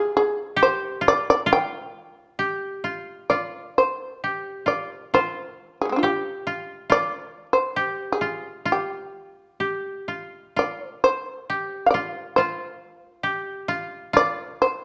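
Dark, reverberant recital-hall sound frames this austere, calm piece of Japanese traditional chamber music, cut from a longer work and moving in a rubato 2/4 around 63-70 BPM in G, where an up-front shamisen carries the melody with a buzzing, percussive, plectrum-plucked tone, while a dry, woody, up-front koto played with fingerpicks joins it on a narrow second line, and the music shifts into a new section at 3.3 seconds.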